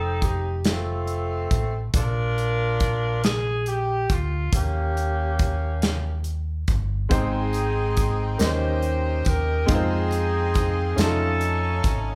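In a slow, straight 6/8 at 46 BPM counted in dotted quarters, this jubilant, soulful gospel excerpt opens with a jazz-style saxophone section carrying the melody with soft attack and light vibrato, over a dark, round, punchy fingered electric bass and an acoustic drum kit with a tight kick and medium-tuned snare that comes in at 0.2 seconds. At 7.1 seconds a brilliant baby grand piano with long sustain adds accompaniment, while a rich, floating string section holds sustained chords in the background, and a jingly, very quiet tambourine joins at 7.5 seconds. The band plays together live in one room with a moderate large-studio reverb, moving from F7 through Bb, Eb7, Abmaj7, Eb7 again and Fm7 to an altered F7.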